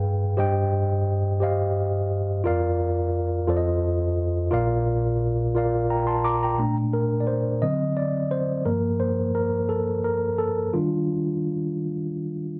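A dry, close studio sound in a 1970s style frames this short cut from a longer gospel piece, with a touch of light reverb around a single instrument. A mellow tine electric piano plays alone from start to finish, sitting up front in a clean, warm tone heard through its built-in speakers, spanning from Bb1 up to D6. The music moves at a slow 58 beats per minute in a straight 6/8, in Bb major, with a soulful, uplifting mood. The opening passage moves through Cm/G, Bb/F and F7 before settling on Bb. From 6.6 seconds the piano carries a solo over richer harmony, gliding from Bbmaj7 through D7 and Gm7 to a lush Ebmaj9 at 10.7 seconds.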